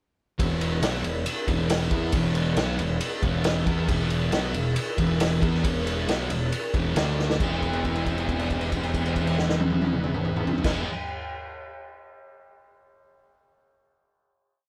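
Recorded as a live band in one room with moderate studio reverb, this short, swaggering blues rock and southern rock piece drives along at 137 BPM in a straight 4/4 around E. An up-front, bright, double-tracked fuzz guitar pounds out a power-chord riff, doubled by a growling overdriven bass playing a boogie figure, while a punchy vintage kit with dark cymbals and a pumping room sound keeps a big groove. A gritty tonewheel organ sits in the background with held chords through a slow rotary speaker, chorus vibrato and key click, and a drum fill at 7.2 seconds leads the band into a final held E chord from 7.4 to 10.9 seconds.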